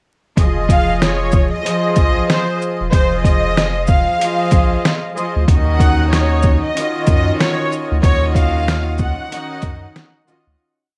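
A gritty, pitched-down sampler-style drum kit sits up front with a thumpy kick, medium-tuned snare, shaker and sparse quarter-note hats, driving this moody, tough boom-bap hip-hop piece at 94 BPM in Eb dorian with a swung feel, while a round, deep analog bass loops a dark line with chromatic approach notes, a reedy, gut-string studio string section repeats chopped chords like a sampled loop, a lush symphonic violin section with vibrato and plate reverb carries a short looping melody from 0.7 seconds, and vinyl crackle runs through the hook until it fades out between 8.0 and 10.6 seconds.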